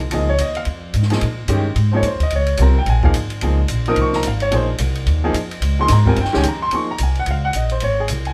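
A brisk 4/4 swing at 218 BPM, with eighth notes lightly swung, drives this short modal jazz cut from a longer piece, set in B-flat Dorian and tuned slightly high. The upright bass opens the passage at 0.0 seconds, its plucked steel strings sounding woody and up front, and the concert grand piano and compact cocktail drum kit join a moment later. The piano carries the accompaniment with a clear, smooth, vintage tone and deep low end, sitting up front beside the bass, while the kit stays further back, dry and natural, with dark cymbals on ride and hi-hat, a high-tuned snare and a punchy kick. The harmony rests on a Bbm11 chord before shifting to Eb9sus4 at 6.7 seconds as a new phrase begins. The trio sounds like a band playing together in one small room with a moderate, short reverb, giving the searching, cool mood an intimate, live feel.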